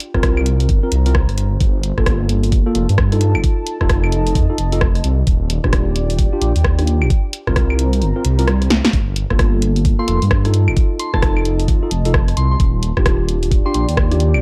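A warbly, lo-fi pad sits in the background with chorus, reverb and sidechain pumping, while a punchy analog drum machine plays claves, hi-hat, rim click and a punchy snare in this late-night, moody two-step UK garage excerpt at 131 BPM with a swung 16th-note feel. Almost at once a knocking, up-front electronic kick arrives with a deep, rumbling detuned saw bass that pumps against it. A mellow tine electric piano adds stabs coated in analog chorus and dub echo. The chords cycle through C7sus4, Gm9, F7 and Ebmaj9, giving the groove a dusky, jazzy colour. The kick drops out from 8.0 to 8.9 seconds as a very quiet electronic swell sounds and a drum fill lands at 8.7 seconds. From 10.0 seconds a soft, pure FM bell plays a gentle melody with chorus and dub echo, set in a dark, digital ambience.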